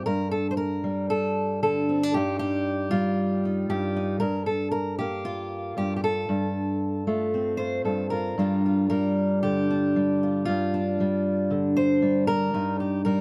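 A fingerpicked steel-string acoustic guitar sits up front in this short, intimate folk piece in G minor at 116 BPM, its auditorium-body tone heard through close, detailed microphones that catch the occasional finger squeak in a nearly dry room. The wistful harmony opens on Gmadd9 and moves through Eb/G, Bb5/G and F/G over G in the bass, then shifts to a new passage at 8.4 seconds, beginning on Gm7 and returning to Eb/G. The solo guitar spans G2 to C5 in this 13.2-second cut from a longer piece.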